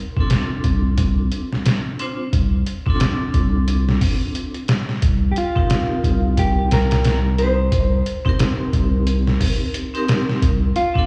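A swung sixteenth-note groove in 4/4 drives this dark, cinematic trip hop fragment, cut from a longer piece. The sampler-style drum kit sits up front, compressed and pitched down, with a gritty, thumpy kick, a medium-tuned snare and hi-hat, all carrying a tape-warm grain and a small room reverb. Beneath it, a round analog bass enters at 0.6 s on a deep, nasal low note with a fast attack and sustained body, thickened by tube saturation. A vibraphone played with hard mallets sits lower in the mix as accompaniment, its metallic, ringing tone shaped by a fast motor vibrato, tremolo and tape echo in a boxy space. At 5.3 s, just after the harmony moves from Dm7/C to Cm7, a clean, fingered electric guitar steps forward with the melody, dark in colour and trailed by its own tape echo. The mix sounds as if played through a big sound system in a bare room, with a large studio reverb opening up the space.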